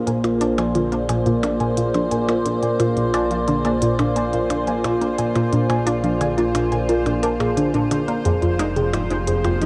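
Drenched in a huge, wet reverb with a long tail, this hypnotic, cosmic slice of sequencer-driven space music floats on an evolving, morphing wavetable pad held up front in sustained chords, with a fat, thick analog bass beneath and a bubbling stepped-filter texture tucked in the background. From 0.1 s two synth plucks join in: a soft, round, full-bodied voice carrying chorused, delayed arpeggios, and a juicy, squelchy resonant blip playing a bright, phased riff, while clicky electronic hi-hats and percussion blips echo through analog delay. The harmony rests on Bb7 before shifting to Fm7 at 8.3 s.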